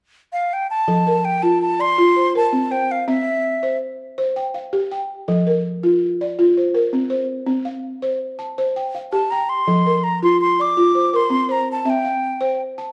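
Set in a dark, moderate recital-hall reverb, this hypnotic, joyful fragment of West African traditional music in F major moves at 109 BPM in a straight 12/8 feel, with an up-front, woody, buzzing balafon struck with soft rubber mallets cycling arpeggios over F and C from 0.9 seconds, while an airy wooden flute with vibrato and a crisp attack sings the melody from 0.3 seconds and returns at 9.1 seconds.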